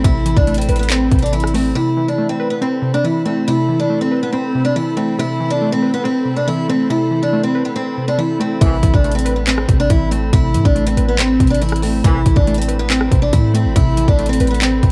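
Hard-hitting and menacing, this half-time trap beat is cut from a longer piece and carries a dark production with a dry, warm sound. A picked steel-string acoustic guitar sits up front carrying the melody, and beneath it a warbling, lo-fi pluck with a detuned, chorused tone supplies the accompaniment. An ethereal, airy pad holds sustained chords in the background, softened by ensemble chorus and its own reverb. The trap kit, with a hard-clipped kick, metallic hats, handclaps and rim clicks, hits hard alongside a deep, boomy 808-style bass, drops away around 1.6 seconds and returns at 8.6 seconds. A mellow, distant brass section adds brief tape-echoed stabs at 8.6 seconds and again at 12.0 seconds.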